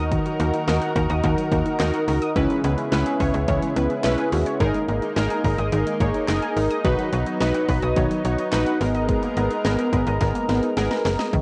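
Round, detuned sawtooth keys with a filter sweep, a lush, thick unison pad that swells in slowly, a warbling, lo-fi pluck playing arpeggios through analog delay, and a snappy slap-like FM bass with a metallic attack open this nocturnal, driving synth-pop excerpt in G# minor at 107 BPM, joined at 0.1 seconds by a punchy, layered house drum kit with a cracking snare, hi-hat and handclaps that ends in a fill at 10.2 seconds, the chords moving from D#m through C#m7, G#sus2 and B to G#madd9 within a moderate spring reverb and the dusty, high-end-dulled sound of a home cassette recording.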